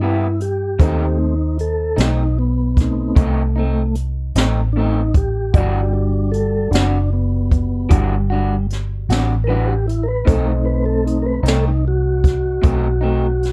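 A dry, dark, warm production frames this soulful, smoky slow blues excerpt in 12/8 at 51 BPM, where a mellow, flute-like tonewheel organ carries the lead through its slow rotary speaker, up front over chords moving from Cmaj7 through B7b9 and Em9. Beneath it, a round, foam-muted vintage electric bass sits close, a woody upright piano murmurs in the background, and an electric guitar through a small old amp adds slightly broken-up, lo-fi accompaniment shimmering with harmonic tremolo. A roomy jazz kit played with brushes comes in at 0.4 seconds, pairing a high-tuned snare with a boomy kick and hi-hat under a rolled-off top.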